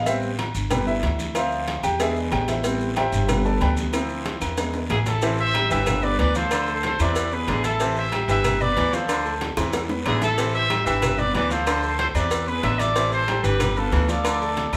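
A driving, danceable salsa groove in straight 4/4 at 186 BPM in A minor, built on a cycling Am7–Gadd9–Dm7–E7 progression: woody, growly pizzicato upright bass sits up front under a clear concert grand piano with deep lows, while background congas, tight high-tuned cowbell and bongos, ringing metal timbales with agogo bells, raspy guiro, grainy maracas and very quiet dry claves fill out the percussion. The piano leads the opening, and a drum fill carries it into a punchy, vintage trumpet section with light vibrato that takes the melody from 4.9 seconds, joined at 5.2 seconds by a bright, forceful baritone saxophone with a smooth top playing a low second line. The band sounds like it is playing live in one room, bathed in a wet large studio reverb, and this excerpt is cut from a longer piece.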